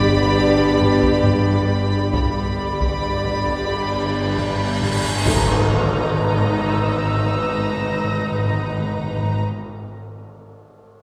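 A slow, straight 4/4 pulse at 68 BPM carries this ominous, tense suspense film-score excerpt, where lush violins sing a high vibrato melody over a softer second violin line, smooth violas, dark, distant French horn chords, a very quiet ringing harp riff, background cellos and very quiet double basses in the bass, and a faint detuned sawtooth drone, while hard-stick taiko enters at 0.8 s, background cymbal swells and tam-tam build in, a huge, bright cymbal swell and impact arrives, and timpani and a high violin texture join at 5.3 s as the harmony moves from G to G#madd9, set in a reverberant concert hall.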